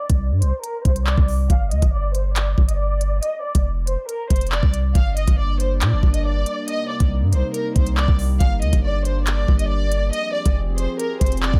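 A deep, mellow 808-style bass sits up front in this tense, ominous drill excerpt, its long sine tones hitting with a fast attack and then decaying beneath a half-time groove. Beside it, an electronic drill kit pairs a knocking kick with crisp hi-hats and handclaps, equally forward in the mix. From the opening, a lush symphonic violin section carries the melody, bowed with expressive vibrato, soft attacks and a smooth top, passed through a low-pass filter that sweeps over its first 5.0 seconds. At 5.1 seconds a warbly, lo-fi pad enters beneath the strings, its sawtooth and triangle tones swelling in slowly with chorus and built-in reverb for a nostalgic haze. The chords move from G minor through C minor seventh and back to G minor before landing on F minor add nine, all set in a digital ambience.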